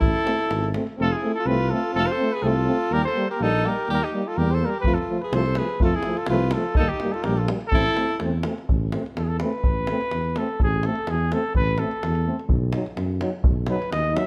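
Bittersweet and restless, this Balkan brass band excerpt moves at 125 BPM in a swung 2/4, with a mellow, vintage-toned trumpet up front carrying the melody over a dark, soft-attacked tuba bass, while a bright, punchy alto saxophone with light vibrato adds a second line until 8.2 seconds. A warm French horn with vibrato and a smooth-topped euphonium fill in the background, and a deep, acoustic davul sounds briefly at the start before returning at 4.8 seconds in a live-sounding room. After chords moving through A minor, F and D sharp, the trumpet takes a solo from 8.7 seconds over A minor shifting to B, captured with close, detailed microphones and a touch of reverb.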